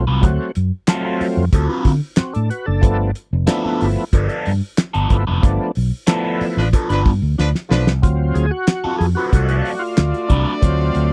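An overdriven tonewheel organ, thick and gritty with key click, chorus vibrato and a slow rotary speaker, punches out stabs through this strutting 92 BPM funk excerpt before taking a solo at 8.0 seconds over D7#9. Beneath it, a round, amped fingered bass and a cloth-damped drum kit with a fat snare, tight kick, hi-hat and handclaps sit up front, while a crunchy, picked overdriven guitar with phaser accompanies the move between D7#9 and G9. A punchy horn section with light vibrato joins at 6.6 seconds, amid a band accent and a drum fill, in a dry, close 1970s-style studio recording.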